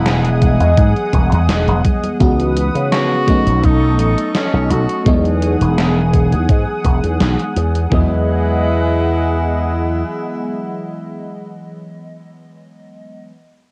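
A faded, nostalgic vaporwave excerpt with the hazy feel of a home cassette recording in a lightly reverberant room, moving at 84 BPM in E major through lush Emaj9, C#m11 and B9 harmony. A smooth tenor saxophone with light vibrato carries the melody over a dreamy, detuned FM electric piano with phaser, chorus and sampler grit, while a thick, warbling sawtooth pad holds bright sustained chords. A growly, punchy slap bass with an envelope filter sits up front beside a gated 80s drum machine with a thumpy kick, toms, congas, hi-hat and gated snare, and the drums stop around 8.1 seconds, leaving the keys, pad, sax and bass to carry on, with the electric piano ringing on alone until 13.3 seconds.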